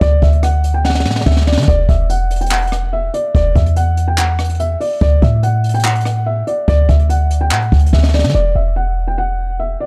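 A half-time trap groove at 144 BPM in 4/4 drives this menacing, dark hip hop fragment in E minor, carried by a jazz brush drum kit with a high-tuned snare, punchy kick, hi-hat, rim click and handclaps, breaking into fills at 0.8 and 7.9 seconds before the kit stops at 8.4 seconds. Up front, a clean, boomy 808-style bass with a sine-like, decaying tone anchors chords moving between D and Esus2. Above it, a soft, felt-muted upright piano sits further back with an intimate, boxy character, shaped by a low-pass filter and tape echo, in a dark studio ambience that shifts into a new section at 8.3 seconds.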